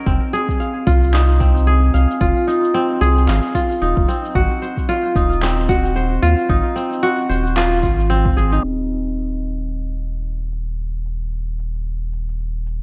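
Hypnotic and meditative, this organic downtempo cut from a longer piece moves at 112 BPM in 4/4 with a lilting swing on the sixteenths. A fingerpicked kora sits up front, spinning ringing, crisp arpeggios through an analog delay until about 10.1 seconds. Beneath it, a round sine sub bass with a fast attack and sustained notes pumps against the sidechain, carrying on to the close at 12.8 seconds. An overdriven, layered electronic kick gives a deep thump until 8.3 seconds, while a tape-warm electronic shaker and handclaps tick along quietly throughout. The harmony moves from Fm7 to Ab6 before dropping away at 8.6 seconds, where a filter sweep takes over the final stretch. A lush hall reverb and low-pass filtering soak the whole mix in a dreamy haze.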